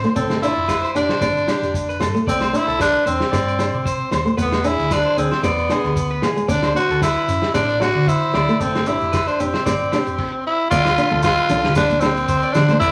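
A growling tenor saxophone sits up front and carries the melody from 0.2 seconds, its bright, raspy tone touched with light vibrato and a breathy edge. Beneath it, this joyful, danceable highlife guitar band excerpt moves at 114 BPM in 4/4 with a gentle swing on the sixteenths, cycling through G7sus4, Csus2, E7 and D7 before shifting to Dm at 10.7 seconds. A small, warm, fingerpicked nylon-string guitar supplies accompaniment, while a slightly broken-up, twangy electric guitar plays picked arpeggios higher up, and a round, punchy hollow-body bass anchors the low end. A vintage drum kit with dark cymbals, a medium-tuned snare and a tight kick keeps time in a small room. Grainy maracas and ringing agogo bells sit in the background, and damped, high-tuned congas enter at 11.1 seconds. A wet studio reverb and a layer of vinyl crackle give the recording an aged, spacious character.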